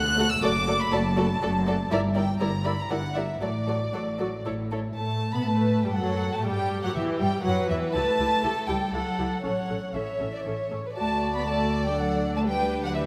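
This is a quick classical-period movement for string orchestra in D major, lively and graceful, moving at 120 BPM in 3/4 with a rubato feel, cut from a longer piece. A violin section carries the melody up front, bowed with light vibrato and a smooth top, while a second violin section plays a supporting line beneath it with a soft attack. A viola section enters at 0.2 seconds with a warm accompaniment, and the cello and double bass sections share the bass with a dark, soft-edged tone. All the strings are played sul tasto, giving the ensemble an intimate, close sound that sits inside a wet concert hall reverb. The opening harmony settles on an A5 before the second section begins at 5.0 seconds on F#madd11, then passes through A7/C# and closes on Em7/D.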